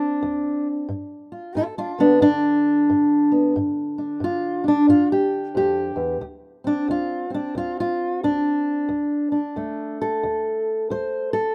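A loping swung 4/4 groove carries this short acoustic country blues excerpt, laid-back and swaggering, played on a lone fingerpicked steel-string acoustic guitar that ranges from D2 to C5. The guitar sits up front with a dark, woody tone from old strings, moving from a D7 to a G7 at 0.9 seconds and settling on a bare D5 at 6.2 seconds. Light reverb and a rough home-demo mix give it an unpolished, close-up feel.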